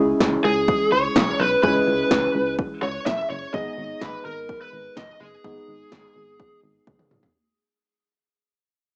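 This cool, nocturnal synth-pop excerpt opens with detuned analog keys, round and chorused with a filter sweep and plate reverb, over a dark, round FM bass that strikes fast and decays. At 0.2 seconds a punchy analog drum machine enters up front, its tape-tinged kick, snare and toms re-recorded in a small room. At 0.4 seconds an overdriven, picked electric guitar through a small cranked amp takes the melody, sitting up front with cassette grit and plate reverb until 6.6 seconds. At a straight 126 BPM in G# minor, the harmony moves from C#m7 to G#m, while a fade runs across the whole passage and a drum fill closes it at 6.9 seconds. The sound is a lo-fi home cassette recording heard through a small speaker, set in a tight, wet booth ambience.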